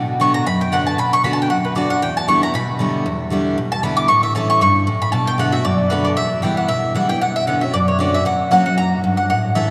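The mandolin carries the melody from 0.2 seconds, its woody, double-strung tone sitting up front and taking a solo through the opening stretch before the music moves into a new section at 6.2 seconds. Beneath it, a bright dreadnought steel-string guitar picks the accompaniment through a B minor progression, driving this lonesome, rustic bluegrass passage at 231 BPM with a light swing. Cut from a longer piece, the performance sounds as if captured in a church or concert hall, bathed in a long cathedral reverb that lets each note ring out.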